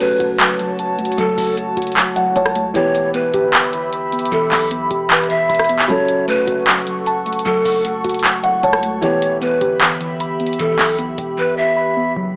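A brooding, hard-hitting half-time trap cut from a longer piece opens at 153 BPM with an up-front electronic drum kit of metallic hi-hats, handclaps and rim clicks, over a punchy 808-style bass sitting deep in the background and a boxy, dark baby grand piano that adds a short fill at 2.0 seconds. Breathy cane pan pipes with vibrato and chiff carry a second line through analog delay, while muted, felt-like synth keys play chorused, filtered arpeggios and a warbling, nostalgic tape-like pad holds detuned chords through phaser and reverb over an F#m to Em progression. The drums drop out at 11.4 seconds before a break at 12.2, and the mix has a dry, gritty hardware character heard through a small speaker with light reverb.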